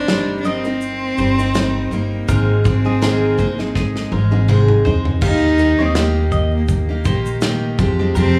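An intimate, close-miked single cello carries the melody with a soft attack, light vibrato and an airy, sul tasto bow, set in an easy-going, sunny acoustic pop excerpt with a gentle swing. A full-bodied, up-front picked dreadnought acoustic guitar and a clean, compressed twelve-string electric guitar playing quiet background arpeggios fill the harmony, while a woody, dark pizzicato upright bass anchors the low end. A studio drum kit with a punchy kick, shaker and rolled-off top plays a drum fill from 3.8 to 5.2 seconds, as the whole ensemble sits in a moderate recital-hall reverb.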